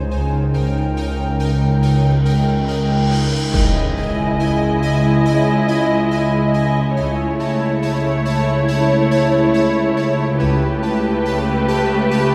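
Heard from further back in a reverberant scoring stage, this eerie, uneasy suspense film cue in free time opens on a tense, detuned bowed-like drone, veiled con sordino cello and double bass sections and a bright, pulsing gated texture holding sustained chords over C#, until a huge, dark cymbal swell at 2.7 s gives way to an impact at 3.5 s, where muted violins enter with a vibrato melody and a lush second line alongside rich muted violas as the harmony moves through C#madd9, A/C# and Gadd9/C#.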